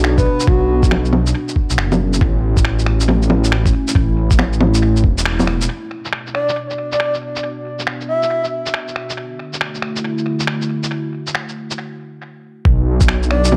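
Future garage excerpt with a rainy, melancholic mood, where a warbling, nostalgic pad with chorus and built-in reverb carries sustained chords under muffled, pitched-down finger snaps, shaker and bongos with tape echo, while a thumpy kick drops out at 5.2 seconds and a menacing detuned saw bass follows at 5.7 seconds, leaving a breathy, flute-like lead with vibrato to float through the echo-heavy mix until both low parts return at 12.7 seconds.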